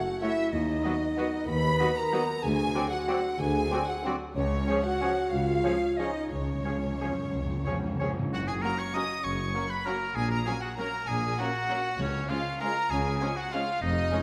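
Sweeping and elegant, this orchestral ballroom waltz in 3/4 and F# major sways with rubato at roughly 169-214 BPM: a close, expressive violin section carries the melody over a second violin line, a clear oboe and an airy silver flute, while sustained chords come from a dark, distant French horn section and a tight, vintage trombone section, and accompaniment comes from a smooth viola section and a soft, very quiet bassoon that drops out at 8.1 seconds; a portamento cello section, a lush double bass section and a mellow tuba share the bass, and articulate hard-mallet timpani add a fill from 6.3 to 8.3 seconds, all set in a reverberant scoring-stage space.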